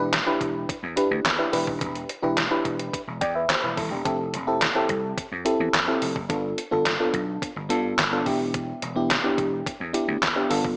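A mellow FM electric piano sits up front with a soft, round, dark tone, a noise layer and fast-attack, decaying notes, coloured by chorus and phaser as it comps through Em7, A9sus4, Fmaj7 and G7 in this smooth, danceable early-eighties boogie funk cut at 107 BPM. Beneath it a vintage slap bass brings a bright, growly, punchy amped sound, while a detuned 8-bit drum machine enters at 0.1 seconds with a thumpy kick, medium-tuned snare, hi-hat and handclaps, overdriven and up front, with a sampler-style character captured in a large room. A moderate plate reverb and a small-speaker quality frame this brief section taken from a longer piece.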